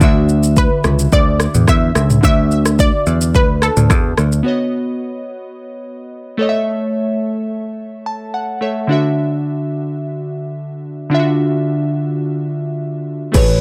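A breezy, romantic afrobeats groove opens with glassy, warbling digital keys with a vintage, chorused sheen, together with a warm, up-front picked electric bass and a produced electronic drum kit with a deep kick, rim clicks, shaker, toms and crash. A bright, round analog pluck carries a short detuned sawtooth melody through chorus and digital delay. Bass and drums drop out at 4.4 seconds, leaving the dry keys alone, with a filter-swept fill at 7.8 seconds, until the rhythm section briefly returns at 13.3 seconds.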